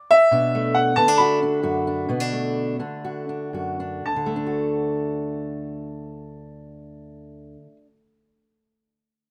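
In a small room with the rough feel of a home demo, this brief uplifting, nostalgic folk excerpt sets a brilliant, open upright piano melody up front over a dark, old-stringed fingerpicked steel-string acoustic guitar, easing to a slower pace on a Bm7 before moving to D at 4.1 seconds.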